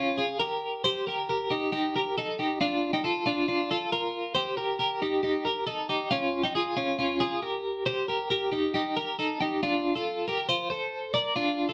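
A straight, even 4/4 pulse carries this brief, youthful indie pop fragment, which moves at a lively clip with a breezy, carefree mood. A lone twelve-string electric guitar plays throughout, its clean, picked tone compressed and placed up front, with a tremolo effect adding a shimmering flutter to the sound. The harmony drifts through Db, Eb, Bbmaj7 and a rootless Cm7 before circling back to Db and Eb, giving the opening stretch an open, sunny lilt. At 9.6 seconds the music turns to a new section that settles on a bright Bbadd9 chord until the clip ends at 11.7 seconds. A generous studio reverb surrounds the guitar, and the performance has the natural feel of a band playing live together in one room.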